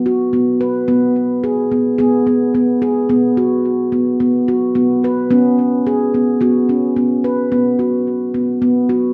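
A recital hall's lush reverb surrounds a single handpan, which sits up front and mid-forward in the mix, its ringing stainless-steel tones trailed by a delay. This short cut from a longer world piece is meditative and hypnotic, carried in 4/4 with a light swing on the sixteenths. The handpan plays solo throughout the 9.1 seconds, struck with soft fingertips that give it a mellow, gentle voice across its range from B3 to B4. The harmony stays anchored on B, drifting from an open B5 to G#m over B, returning to B5, then moving to F#5 over B before settling back on B5 at 7.5 seconds. The lingering ring of the steel, blooming in the hall, gives the passage a calm, trance-like pull.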